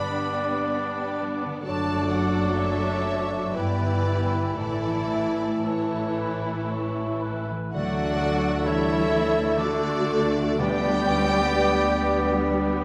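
A lush, vibrato-rich violin section carries the melody in this serene, tender slow romantic orchestral movement in 3/4 with a rubato feel, while a second, softer violin line, a clear clarinet and a dark, distant cor anglais weave supporting lines over a roomy bassoon, expressive violas, clear French horn chords and ringing thumb-plucked harp arpeggios. Woody cellos and double basses enter at 1.7 seconds, mellow, very quiet trombone chords join at 7.7 seconds, and a pure, silvery flute follows at 7.8 seconds. A round, soft-mallet timpani touch arrives at 10.6 seconds, all set in a wet recital-hall reverb.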